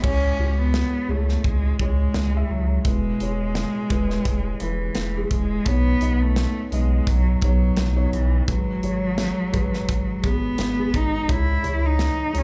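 Bittersweet yet driving, this piano-driven pop excerpt moves at 85 BPM in 4/4 with a light sixteenth-note swing, set in C# minor and tuned slightly high to A4 = 441 Hz. A rich, bowed solo cello carries the melody up front from start to finish, singing with vibrato in a nasal, focused, somewhat boxy voice between E3 and E4. Beneath it, a felt-muted upright piano supplies soft, mellow accompaniment with thick felt, audible action noise and a slapback echo, sitting dark and intimate in the mix. A deep, round sine sub bass holds the low end up front with fast attack and sustained notes, while a polished acoustic studio drum kit adds a punchy kick, a medium-tuned snare, hi-hat and bright crash cymbals. The chords cycle through C#m, E, Badd9 and G#m7 before returning to C#m at 11.3 seconds, and the whole 12.4-second passage sounds like a live gig heard through the venue's PA, wrapped in club reverb.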